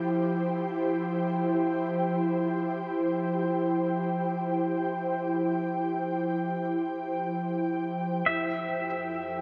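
In a vast, echoing space, this ambient fragment in free time opens on an ethereal, airy pad holding sustained chords up front with shimmer and ensemble chorus, over a tense, string-like bowed drone on F3 with vibrato. At 8.3 seconds the harmony moves from a rootless Am7 to Fmaj7 as a twangy, clean pedal steel guitar enters with slide and volume swells through shimmer reverb and tape echo, while a round analog bass sits deep in the background. From 8.7 seconds a very quiet, felt-muted upright piano adds intimate arpeggios with audible action noise, keeping the mood weightless.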